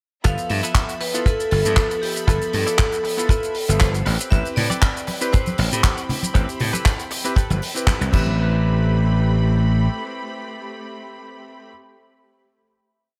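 A four-on-the-floor kick, dry, tight and up front, drives this short, groovy nu-disco piece at 118 BPM in 4/4 with a light 16th-note swing, alongside a damped 70s drum kit playing a disco backbeat of shaker, closed and open hi-hat, handclaps and crash inside a small room with gated reverb. A glassy, punchy slap bass carries a syncopated riff up front in A minor from 0.3 seconds, while tambourine and congas add bright disco percussion in the background between 4.3 and 8.4 seconds. Over this, a metallic, ringing vibraphone struck with hard mallets, motor off, states a motif-based melody of call phrases through a digital delay, and a cutting, vintage electric grand piano with analog chorus holds rootless chords with syncopated pushes. A twangy, clean electric guitar recorded direct picks a compressed funk chord rhythm behind them, and a distant, biting string section sustains a bowed pad with light vibrato and sidechain pumping. 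The harmony moves from G13 to Am9, and after the drums stop at 8.2 seconds the piece lands on a final hit, its bright 1980s-style digital production giving the whole a cosmic sheen.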